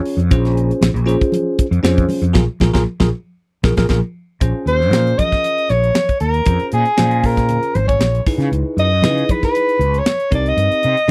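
A dry, close 1970s-style studio sound with light reverb frames this brief cut from a longer electric jazz fusion piece in Bb minor, moving at 117 BPM in a straight 4/4 with a slick, intense mood. A clean, bell-like tine electric piano with phaser carries the accompaniment over a polished, airy funk drum kit with a high-tuned snare and tight kick, while a growly, amped fretless electric bass sits up front. Low-tuned congas, played with soft hands and carrying a warm, thick-skinned tone, stay in the background. Around 2.4 seconds the band hits an accent, with an electric piano fill and a short drum fill leading into the next passage. At 4.7 seconds a mellow soprano saxophone steps forward to solo in a jazz style, with light vibrato and a roomy, distant tone. The harmony rests on Bbm9 before shifting to Dbm9 at 8.3 seconds and settling on Cm7.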